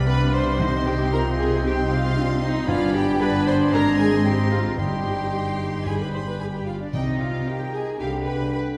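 Set in a straight 4/4, this stormy, dramatic excerpt from a quick classical-period symphonic movement gives the melody to an intimate sul tasto chamber violin section over a woody second violin line. A pure silver flute, a lightly vibrato oboe, a mellow clarinet and a vintage-toned bassoon sit in the background, a tight French horn section holds sustained chords, and expressive violas fill out the accompaniment. Cellos with portamento and dark, even double basses anchor the bass, while very quiet soft-mallet timpani sound round beneath, the whole ensemble heard from further back in a wet scoring-stage reverb.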